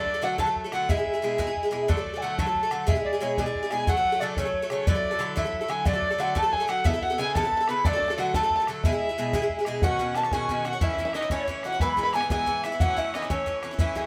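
Celtic folk jig in 6/8 at 121 BPM, bright and cheerful, with a mellow, hollow wooden baroque flute carrying the melody with vibrato and tongued notes, sitting slightly distant, while a bowed fiddle with a reedy gut-string tone plays a second line. An up-front, metallic double-strung Irish bouzouki picks the accompaniment and a close, boomy bodhran drives the percussion, as a twangy bluegrass banjo played with fingerpicks adds a second line from the background, dropping out after 1.7 seconds and returning at 5.9 seconds. The band plays live in one room with a wet studio reverb, moving into B mixolydian at 9.8 seconds in this cut from a longer piece.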